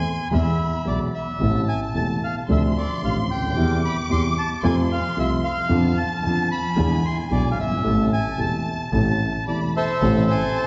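Heard from further back in a reverberant concert hall with a dulled top end, this melancholic, tense tango fragment moves in a rubato 4/4 around 111 BPM in A harmonic minor, its chords winding from E through Dm7 and F to E7 before settling on Am. A reedy, dark bandoneon carries the melody over a distant, lush violin section holding a high second line, while an up-front grand piano with deep bass and long sustain supplies the accompaniment and a focused, bowed double bass played by one player anchors the low end with vibrato. At 10.0 s a very quiet chamber string section with a gut-string, period-style tone adds brief stabs just before the piano and bass fall away at 10.3 s.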